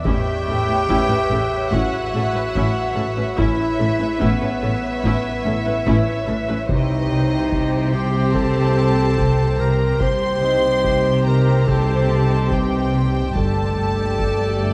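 A cinematic suspense score at 72 BPM in 4/4, this ominous, tense passage is cut from a longer piece and moves through Aadd9, Cm and Gsus2. Solo taiko drums struck with heavy sticks sit close under a low bed of dark double basses and warm cellos, both bowed sul tasto with soft attack, while a very quiet fingerpicked concert harp repeats a ringing riff. Above them, a warm chamber violin section carries the melody with light vibrato. A pure, floating studio violin section and a mellow, classical-style solo clarinet add a second line, and a dark viola section accompanies in the background. Electronic layers deepen the unease: a bubbling, detuned sawtooth texture with random filter steps holds bright sustained chords through chorus and reverb, and an eerie, warbling FM drone with an inharmonic, metallic edge hums low beneath. A vibraphone played with medium hard mallets and slow motor vibrato sounds briefly at the start and returns at 5.5 seconds as a background shimmer. 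The close, detailed recording carries light reverb and vinyl crackle.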